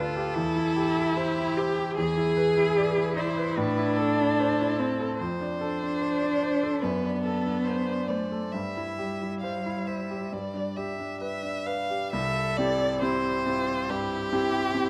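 A classical slow romantic movement for piano trio in C major, this serene, lyrical passage moves at 65 to 76 BPM in 4/4 with a flexible, rubato feel, cut from a longer piece. The violin carries the melody with a rich, focused, bowed tone and vibrato, sitting up front in the mix. Beneath it the cello sings a second line, smooth and even with its own vibrato, while a clear, natural grand piano supplies the accompaniment across a broad register from deep bass to the treble. The harmony travels from C over E through E7, A minor, D minor seventh and D7, then C over G before settling on G and returning to C as a new section begins at 12.1 seconds. Close, detailed microphones capture the trio in a moderate scoring-stage reverb, and a vinyl crackle lends the sound an old-record patina.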